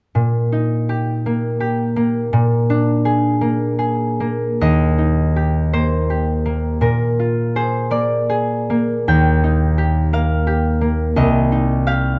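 A dark, warm recital-hall sound with a moderate reverb frames a serene, graceful classical excerpt for solo concert harp in Eb major, its rubato feel set in 6/8 at roughly 47-58 BPM counted in dotted quarters. The fingerpicked harp sits up front, ringing from C2 up to G5 across the whole 12.2 seconds. It moves through Eb and Bb7 harmonies into a second section at 4.6 seconds, then reaches a Cm at 11.2 seconds in this cut from a longer piece.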